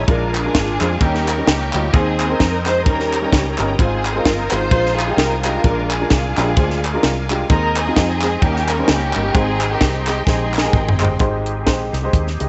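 A dry, tight funk drum kit sits up front in this uptempo gospel excerpt, its high-tuned snare, tight kick and bright cymbals driving a swung 129 BPM groove in 4/4 and Ab major, with a drum fill from 10.3 to 11.2 seconds. A bowed studio string section carries the soulful, reverent melody from 0.1 seconds, its expressive vibrato and portamento smoothed by tape echo, until it drops out at 11.2 seconds as the music moves into a new section. Underneath, a woody, slightly detuned vintage upright piano with long sustain provides accompaniment, while a foam-muted, direct fingered electric bass anchors the low end. A reedy, lightly overdriven tonewheel organ holds sustained chords in the background, with key click, chorus vibrato and a fast rotary speaker. Hollow group handclaps from a small room add human texture. The harmony cycles through Bb7, Eb7, Ab/Eb and Ab6 before settling on Abmaj7, all in a light reverb.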